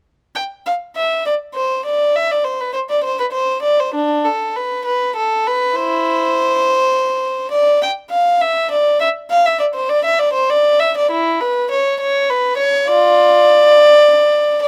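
In a flexible, rubato 12/8, this serene, radiant baroque-style suite movement for unaccompanied violin features one period-style player from 0.4 to 14.7 seconds, the nasal, reedy gut-string tone and airy bow sitting up front between D4 and G5, captured by close, detailed microphones with little reverb in a short portion cut from a longer piece.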